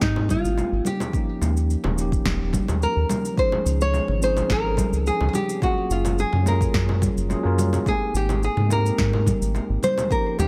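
Blissful and warm, this sunset chillout passage is cut from a longer piece and moves at a straight pulse. A dark, classical nylon-string guitar carries the melody up front, fingerpicked with audible finger squeak and trailed by delay. A clean tine electric piano, heard as if through its built-in speakers, fills in the accompaniment with its own delay, gliding through lush ninth chords from Abmaj9 to Eb9, Dbmaj9 and Gbmaj9. Underneath, a round analog bass sits prominently, its detuned blend of sawtooth, sine and triangle tones giving a deep, sustained low end with a fast attack. The beat comes from layered, overdriven electronic drums re-recorded in a small room, pairing a deep kick with a punchy snare, shaker and congas, while a second, bright, vintage-sounding acoustic conga part sits in the background from 0.3 to 9.9 seconds. A light reverb gently wraps the whole mix.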